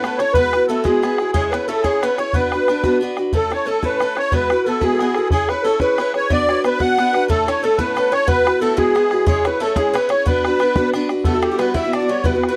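A shimmering, dark musette accordion carries the melody up front from the start of this wild, lively Celtic jig in 6/8, alongside a boxy parlour steel-string guitar with audible finger squeak, an open, boomy bodhran, and a very quiet, pure bamboo bansuri tracing a tongued second line. A metallic, double-strung bouzouki picks a background line, dropping out at 3.0 seconds and returning at 7.3 seconds. The sound is a dry, close 1970s-style studio recording with light reverb, and this cut from a longer piece ends shortly after a new section begins at 11.3 seconds.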